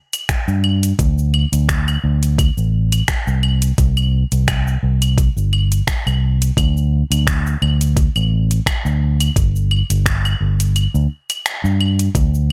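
A blissful, smooth sunset chillout excerpt at 86 BPM in 4/4 with a light 16th-note swing opens on an electronic smooth R&B kit of cabasa, claves, finger snaps and metallic hi-hat set in a large room, joined at 0.3 seconds by a gritty, thumpy sampler-style kick from a small room that drops out from 10.8 to 12.2 seconds, while a dark, round, up-front fingered electric bass enters at 0.5 seconds and moves between G1 and G2 in a dry mix.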